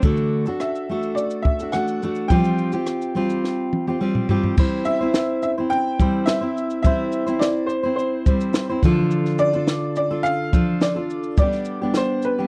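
This dry, close recording has the intimate feel of a 1970s studio, with little reverb around the players. A sunny, heartfelt acoustic pop piece in C major at 106 BPM, it opens on a full-bodied, fingerpicked jumbo steel-string acoustic guitar placed up front beside a compact cocktail drum kit. The kit's punchy kick, high-tuned snare, rim click, shaker, toms and crash cymbal have a dark, smooth sound with a rolled-off top. A woody, boxy upright piano carries the melody from 0.6 seconds, sitting a little further back in the mix. The harmony moves from D to Fsus2, and a drum fill from 3.4 to 4.6 seconds leads into a second section built on C, Dm and G, lending this short, warm passage from a longer piece its easy lift.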